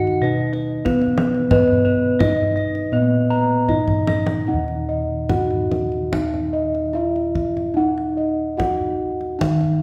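Javanese gamelan in Eb pelog, this stately, hypnotic passage moves at a measured 73-98 BPM in a straight 4/4, cut from a longer piece. A soft, mellow bronze metallophone struck with padded disc mallets carries the melody throughout, its ringing tone sitting beneath a brighter metallophone played with a horn mallet that spins arpeggios higher up until it stops at 4.5 seconds. Bossed gongs anchor the bass with a round, beating sound from padded beaters, their boxy small-room colour adding warmth, while another set of bossed gongs adds arpeggios in the upper register from 0.2 seconds. The kendang sits deep and close, up front against the ensemble, and plays a drum fill from 3.7 to 4.5 seconds that leads into the second section. The whole is heard from further back in a wet recital hall with a 1.4-second reverb tail.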